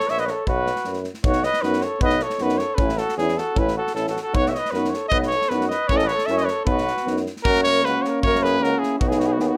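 Exuberant and festive, this short Balkan brass band excerpt in a brisk 2/4 sets a dark, up-front trumpet with light vibrato on the melody over a distant, mellow flugelhorn second line, a clear, roomy tuba bass from 0.1 seconds, a punchy acoustic kit with kick and snare, and a soft-attack euphonium and vintage-toned trombone entering in the background at 1.2 and 1.3 seconds, all in a small room ambience with plate reverb on the trumpet.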